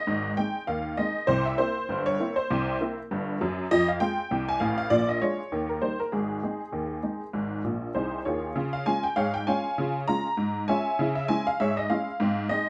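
Ragtime piano at 99 BPM in a lively, cheerful 2/4 with a light swing, played by a solo honky-tonk upright that sounds detuned, jangly and vintage, sitting bright and up front in a moderate studio reverb as it moves from Ab through C7, Fm and Bb7 to Eb, drops a fill at 7.7 seconds, and turns to Db at 8.6 seconds and Dbm at 11 seconds before this short cut from a longer piece ends at 12.7 seconds.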